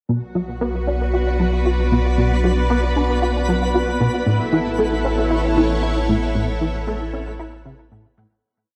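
Awash in spring reverb and echo, this short, hypnotic and expansive piece of sequencer-driven space music sets a punchy, filter-swept analog bass step sequence with chorus and delay against lush, chorused string-machine chords and a deep, round sine sub bass, while a sparkling granular FM shimmer enters at 0.7 seconds before the fade-out begins at 5.7 seconds.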